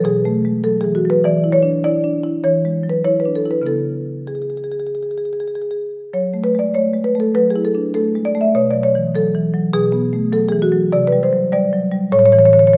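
Reflective and hypnotic, this contemporary classical fragment, cut from a longer piece, features a solo marimba played with soft mallets, its woody, round tone sitting up front in a moderate recital hall reverb as the harmony drifts from B5 through E7, C#m7 and F#m7 to Csus2 before settling on A at 12.1 seconds.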